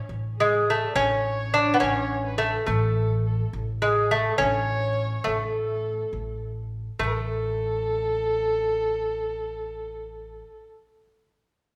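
Set in 6/8, this short excerpt from a longer Persian modal piece in dastgah mahur carries a melancholic, soulful mood, with a woody pizzicato upright bass sounding from 0.1 seconds under a bright, delicate fingerpicked lute that leads the melody on doubled nylon strings. A bowed kamancheh enters with the lute at 0.4 seconds to trace a second line above it, its soft attack, vibrato and portamento giving an expressive, smooth voice. The trio plays live in one room, close and up front, bathed in a large studio reverb, moving from its opening section into a new one at 7.0 seconds.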